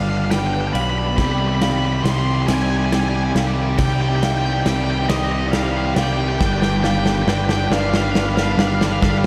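A fuzzed, overdriven electric bass sits up front in this brooding, cathartic post-rock excerpt, picked low and heavy beneath a slow 6/8 pulse at 46 BPM in C harmonic minor. Over it, a cranked stack guitar carries the melody with a bright, overdriven tone trailed by diffuse ambient delay, while a tight distorted guitar grinds out a riff in the background, joined by a second, higher distorted riff from 1.2 seconds. A loose indie drum kit enters at 0.3 seconds with a pumping small-room sound, a tight kick and a rolled-off top, filling throughout as the passage builds. Beneath the guitars, a very quiet twelve-string electric guitar picks clean, compressed arpeggios, a felt-muted upright piano adds dim, intimate arpeggios with audible action noise, and a deep analog pad holds slow-attack chords thickened by chorus and phaser. The harmony moves from G7 to Cmadd9 and returns to G7 at 6.4 seconds, all bathed in a lush hall reverb that gives the mix a dreamy, soaked quality.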